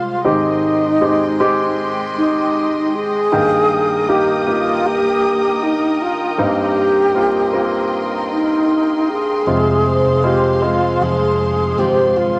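A straight 4/4 pulse carries this heartbroken, longing pop excerpt, where a breathy, unsteady alto flute with vibrato and a crisp attack sings the melody up front over a polished grand piano with deep bass and a lush, bowed string section holding chords through Abmaj7, Eb/G and Cm7, until a picked, full-bodied acoustic guitar in the background and a dark, round fretless bass enter at 9.5 s on Fm, framed by moderate studio reverb and vinyl crackle.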